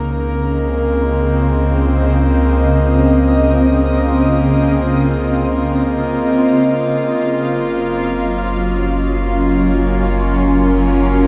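Drenched in a cathedral-sized reverb that rings for about 5.8 seconds, this melancholic, spacious ambient excerpt drifts in free time. A shimmering, detuned pad with chorus and a filter sweep holds sustained chords up front, moving from Dbmaj9 to Gbmaj7 at 6.9 seconds, while a round analog bass sits deep beneath it. A reedy, breathing harmonium drone on Bb3 lies quietly in the background throughout.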